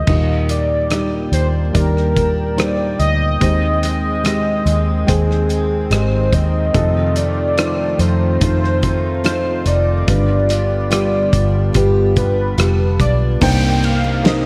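A straight 4/4 pulse at 72 BPM carries this heartbroken, longing pop ballad excerpt, where a muffled, lo-fi indie drum kit with a fat snare and a round, foam-muted vintage electric bass sit up front beneath a velvety, detuned synth lead with vibrato, a felt-muted upright piano with audible action noise, a smooth analog pad with chorus, and bright picked steel-string acoustic guitar arpeggios tucked in the background, all bathed in a lush hall reverb as the chords move from Ebmaj7 through F7 and G7 to Cm7, where an electronic downlifter enters at 13.4 s.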